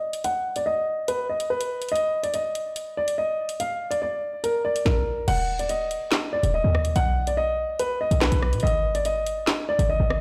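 Played back through a big sound system in a bare room with a large studio reverb, this dark, tense drill cut moves at 143 BPM in a half-time 4/4 feel. A woody, intimate upright piano carries the melody from the start, its action noise audible through a low-pass filter and delay, while an electronic drum kit with a hard-clipped kick, handclaps, rim clicks, crash, hi-hat and snare sits up front. At 5.3 seconds a punchy, tight 808-style bass arrives, its sine tone layered with noise and decaying after a fast attack.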